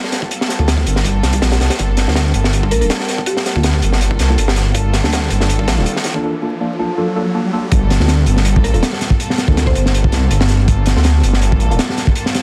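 A dense, heavily limited mix with vinyl crackle and a small room sound frames this frenetic, nostalgic drum and bass and jungle excerpt at 162 BPM in G minor, where a crunchy, saturated breakbeat kit with a high-tuned snare and tight kick drives up front beside a thick, menacing detuned saw bass, while gut-string studio strings hold sustained chords, deep chorused and phased chord stabs with dub echo sit in the background, a woody, mallet-like synth pluck appears briefly, and a filtered build-up with an electronic riser from 4.9 s leads into the drop at 7.7 s.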